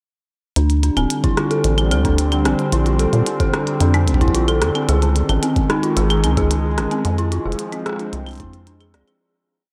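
This intricate, eerie IDM piece opens at 0.6 s with a dark, detuned FM synth bell, a deep acid bass and a glitchy electronic drum kit arriving together. The bell's inharmonic, vintage tone repeats an 11-step sequence that drifts against the bar, thickened by chorus and analog delay. Beneath it, the rubbery square-wave bass sits up front, skipping through a syncopated line with a resonant filter pluck. Clicky closed hats, claves and rim clicks form an ever-changing, glitched beat, and a warbly, lo-fi tape-like pad of sawtooth and triangle tones eases in with slowly shifting, nostalgic chords colored by chorus and its own reverb. A compressed, pitched-up kick, gritty with overdrive and re-recorded in a large room, adds a broken, thumpy pattern from 1.2 s. The dreamy mix is soaked in cathedral reverb, and the music fades out from 6.3 s.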